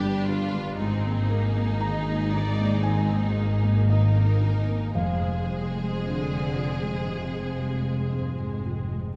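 A hopeful, tender cinematic film-score passage at a slow, rubato 57 BPM opens at once with the full ensemble, as soft-attack violins carry an expressive vibrato melody over a lush, focused second violin line, a smooth viola section, a felt-muted upright piano with a dark, intimate tone, a very quiet ringing harp playing fingerpicked arpeggios, and bowed cellos and double basses anchoring the bass, all set back in a wet scoring-stage reverb as the harmony moves from G to Absus2 and settles on Fm at 5.0 seconds.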